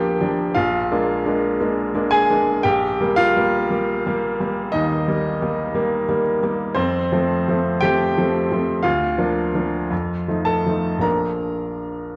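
Worn old cassette tape gives this short classical excerpt a warbling, drifting pitch, set inside a moderate recital hall reverb. A baby grand piano sits up front, its tone clear and natural, with audible action noise lending an intimate closeness and long sustain letting each chord ring. The mood is lyrical and tender, unfolding slowly in four with a rubato feel that lets the pulse breathe. The piano plays an accompaniment role, spanning a deep low register up into its bright middle-upper range across the full 12.2 seconds. The harmony rests on the home chord, briefly takes on a seventh, moves through a subdominant colour over a held bass and a dominant passage, then turns through a dominant seventh to settle home at 11.0 seconds.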